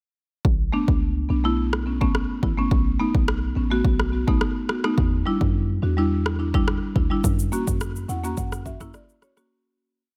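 Tough and sultry, this short dancehall piece in B minor moves at 106 BPM in a straight 4/4, with a punchy, up-front deep house drum kit laying a sparse beat of kick, rim clicks and shaker under a boomy, deep 808-style bass with a noise layer playing syncopated low lines, while a buzzing, woody marimba struck with medium mallets adds dry, dark off-beat chords in close voicing over changes from B7 through Em7 to F#, taking a fill from 7.8 seconds as the piece fades out in a close, dry sound.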